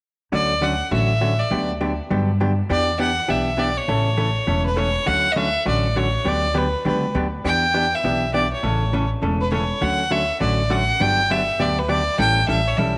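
A down-home, swinging western swing excerpt in which a clear, biting fiddle carries the melody up front with light vibrato and an airy bow, while a dark, clean hollow-body jazz guitar picks a compressed accompaniment over a woody, growly upright bass, all three playing together from 0.3 to 13.0 seconds under a moderate plate reverb as the chords cycle from Dmaj7 through Gmaj7, Em7 and A before closing on A7.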